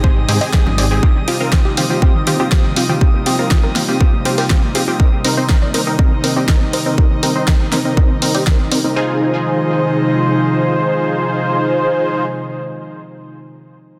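Progressive house in a straight four, driving yet emotional, moving through Abmaj7, Eb69 and Cm7 before settling on Fm7 near 9.0 seconds in this excerpt from a longer piece. An airy, breathy pad holds soft sustained chords with chorus and sidechain pumping, while a tight sequenced synth runs detuned arpeggios through chorus, phaser and tape echo, its filter sweeping until 9.0 seconds. A punchy, full-bodied supersaw stab sits up front with vintage 12-bit sampler grit, a low-pass filter and tape echo, its own filter sweep also running to 9.0 seconds. A plucky, wave-folded analog bass and very quiet, ringing congas appear only in the opening second, while a glassy texture of drifting overtones hovers bright and calm in the background until 9.0 seconds. A punchy electronic kick drives the groove until 8.6 seconds, joined by a pop kit's hi-hat and fat snare, with light reverb over a dense, heavily limited modern master.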